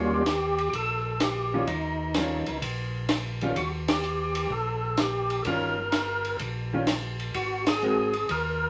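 A percussive tonewheel organ carries the melody up front, its fat, lightly overdriven voice marked by third-harmonic percussion, key click and chorus vibrato, all turning through a slow rotary speaker. This short swinging, soulful soul jazz organ trio fragment, cut from a longer piece, sits on a 4/4 swing and rests on an Eb9 chord before shifting to Ab9 at 7.4 seconds. Beneath it, a second tonewheel organ supplies a mellow, round bass line, clean and dark with its own key click and slow rotary. A hollow-body electric jazz guitar, fingered and clean with a dusky tone, comps up front until 8.1 seconds. A compact cocktail drum kit enters at 0.3 seconds, dry and punchy, with a high-tuned snare, dark ride and hi-hat cymbals, and kick, while the full band hits accents at 3.8 and 7.6 seconds inside a wet, short studio ambience.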